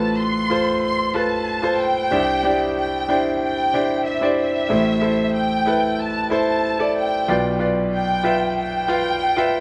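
Earnest and bittersweet, this short pop passage in A minor moves at 93 BPM in a straight 4/4. A clear concert grand piano with deep bass, short sustain and a polished, present sound carries the accompaniment through F/A, Cadd9, Am and Bdim. Above it a lush studio violin section sings the melody with vibrato, soft attacks and expressive portamento, all set in a dark, warm production with a wet studio ambience.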